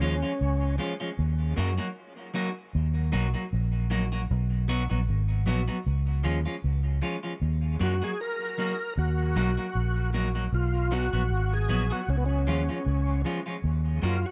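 Dub reggae at 77 BPM in Eb minor, this short cut from a longer piece settles into a deep, hypnotic groove with a light 16th-note swing. A dark, foam-muted fingered electric bass sits up front, round and punchy, carrying the low end throughout. A clean semi-hollow electric guitar plays picked accompaniment from start to finish, its hollow-body tone trailing dub echo. An overdriven tonewheel organ carries the melody, heard briefly at the opening and then returning at 7.8 seconds, thick and gritty with key click, chorus vibrato, a slow rotary speaker and dub echo. The harmony circles through Db, Ebm and B, all set in a digital ambience that adds space around the parts.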